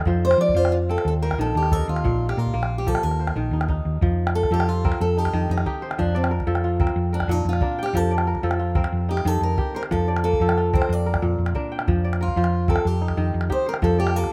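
Rolling in a straight 12/8 at 122 BPM in F mixolydian, this hypnotic West African traditional excerpt sets ringing, crisp kora arpeggios over a dark, round hollow-body electric bass held up front and a deep, band-limited calabash, while a picked steel-string acoustic guitar with audible finger squeak carries the melody and takes a solo from 4.0 seconds as the harmony circles between F, Eb/F and Bb/F in a rough home demo mix with light reverb.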